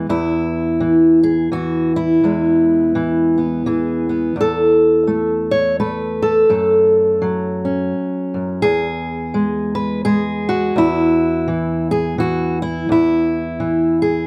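A fingerpicked steel-string acoustic guitar opens this gentle folk fragment on its own, sitting up front with a dark, woody tone and the dulled character of old strings. The piece moves in an unhurried triple metre with a lilting swing on the eighth notes, giving it a relaxed, rocking feel. The guitar covers a broad register, from deep bass notes up into its upper range. The harmony rests on E, moves to A5 over an E bass around 4.4 seconds, touches F#m, and returns to E before the chords fall away at 12.9 seconds. A light reverb adds a touch of space, and the mood stays gentle and warm throughout this short passage cut from a longer piece.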